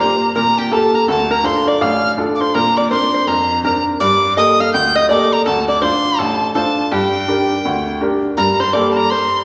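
This is a wild, spirited Celtic folk piece in G minor at 164 BPM in 4/4, with a swung eighth-note feel, cut from a longer performance. A breathy tin whistle carries the melody up front, with a crisp, chiffy attack, lifted highs and a touch of vibrato. Beneath it, an open-back banjo plays a fingerpicked second line whose tone is twangy, percussive and plunky. An upright piano supplies the accompaniment with a brilliant, woody sound, short sustain and audible action noise that keeps it intimate and close. The harmony moves through Gmadd9/Bb, Dm, Bbadd9, Dm7 and Gm, and a new section opens at 8.4 seconds on Gmadd9 before the excerpt ends at 9.4 seconds. A wet recital-hall reverb with a 1.7-second decay surrounds the trio, giving it the feel of a church or concert hall.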